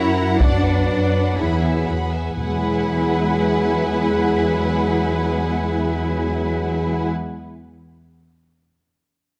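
A lush orchestral sound in a moderate scoring-stage reverb opens this triumphant, adventurous cinematic cue at 122 BPM in E mixolydian, moving from Bm/F# to Eadd9. Violins carry an expressive vibrato melody in the background above a distant second violin line, while dark, woody violas supply accompaniment and a background string section and tight classical French horns hold sustained chords. Smooth cellos and an up-front double bass section anchor the bass, a close and dry taiko ensemble with hard sticks strikes from 0.4 to 0.9 seconds, and timpani on E enter in the background at 2.4 seconds.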